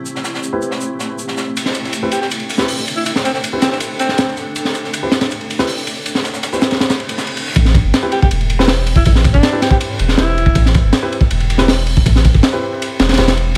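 Vinyl crackle and a small-room ambience frame this dark, nostalgic drum and bass excerpt with a jungle edge. It opens on a cloudy, evolving granular pad holding an Am7 chord beside a high-passed breakbeat kit of hi-hat, shaker and snare, while a vintage grand piano sits in the background with low-passed stabs through dub echo, and a gritty, saturated breakbeat kit with a punchy kick and high-tuned snare comes up front from 1.6 seconds. A clear alto saxophone plays a jazz-style solo melody with vibrato and dub echo, and after a reverse cymbal the drop lands at 7.6 seconds as a deep, round sub bass enters and the pad and filtered kit fall away, with the saxophone returning at 8.1 seconds.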